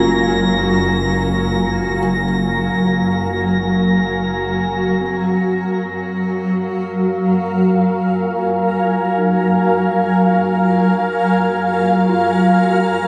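In free time, this luminous, peaceful ambient excerpt in Gb lydian rests on a Gbmaj7 chord, with an up-front granular cloud pad holding blurred, detuned sustained chords while a felt-muted upright piano plays soft arpeggios in the background, its action noise audible and its notes trailed by tape echo. A distant bowed double bass section with gentle vibrato and a bright, glassy harmonics texture shimmering with chorus and drifting overtones both stop at 5.0 s, leaving pad and piano to continue until 13.1 s. The whole piece sits in a huge, wet reverb that blurs every sound into a slowly evolving haze.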